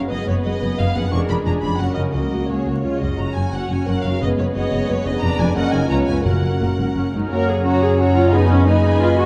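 Opening on a dark, woody violin line over expressive, distant violas, sustained French horn chords and a ringing, thumb-plucked concert harp, this cheerful, lively yet dramatic romantic orchestral excerpt in F# major at 176 BPM in 3/4 with rubato brings in a lush, smooth violin melody above a background bass of cellos and double basses, adds very quiet, dry timpani at 4.2 s, and at 7.3 s gains a hollow flute section, a mellow clarinet and a faint, punchy bassoon, set in a dark, warm production with moderate stage reverb and vinyl crackle.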